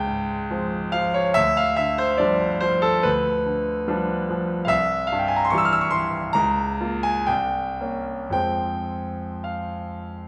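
The sound is close and clear, with a bright concert grand set up front in a moderate recital-hall reverb, its long sustain letting each chord ring. This yearning, melancholic romantic nocturne for solo piano moves in a free rubato 4/4 at roughly 54-75 BPM, its brilliant, open tone reaching from deep bass at C2 up to F6. Over about 10.3 seconds, cut from a longer piece, the harmony drifts from Dbmaj7 through G7/D, C, Bbm/Db and C5 before settling on Fm.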